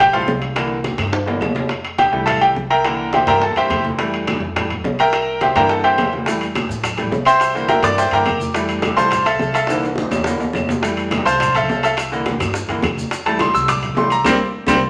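A straight 4/4 salsa groove at 210 BPM in F major drives this festive, joyful excerpt: a brilliant, up-front grand piano, intimate enough to catch its action noise, solos with long sustain over alternating Fmaj7 and C7 chords, backed by a thumpy gut-string pizzicato upright bass, ringing metal-shell timbales, tight high-tuned bongos, low-tuned distant congas and woody claves in the background, with grainy, mellow maracas joining at 6.3 s, all in a large studio reverb, until a band accent lands at 14.3 s.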